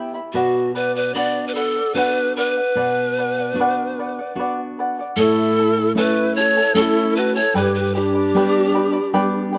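Close, detailed microphones catch every breath and pluck inside a moderate concert-hall reverb in this festive yet wistful Andean folk excerpt, set in B minor at 75 BPM in an unhurried 3/4. A fingerpicked, full-bodied nylon-string guitar and a shimmering charango with double strings carry the accompaniment, while an up-front bamboo pan flute sings the melody with tongued chiff and vibrato. At 5.2 s, as the harmony moves from B minor to A and then G, a mellow, end-blown large quena slips in beneath it with a crisp attack, rolled-off highs and a slightly unsteady, breathy tone.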